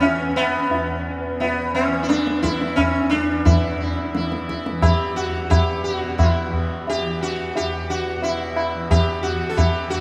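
From the first moment, an up-front, plectrum-plucked sitar with buzzing sympathetic strings carries a longing, introspective Hindustani melody in 5/4 over a bright, shimmering tanpura drone and low-tuned, short-ringing tabla, the whole passage, cut from a longer piece, set in a vast, echoing space.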